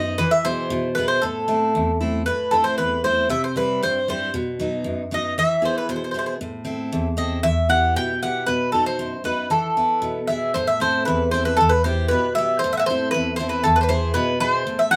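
Moody and cool, this Greek folk passage, cut from a longer piece, moves in a straight duple metre with the feel of a small band playing live together in one room. A Greek bouzouki carries the melody from start to finish, its paired, partly octave-doubled strings giving a metallic, picked ring up front in the mix. Beneath it, a picked steel-string acoustic guitar with a jumbo body supplies bright, full-bodied accompaniment across the whole 15 seconds, also up front though a little quieter than the bouzouki. The harmony circles around A minor and E, passing through C, B and E minor in a central stretch from 2.3 to 10.5 seconds before the opening material returns. A short, wet studio reverb wraps both instruments, adding a sense of shared space.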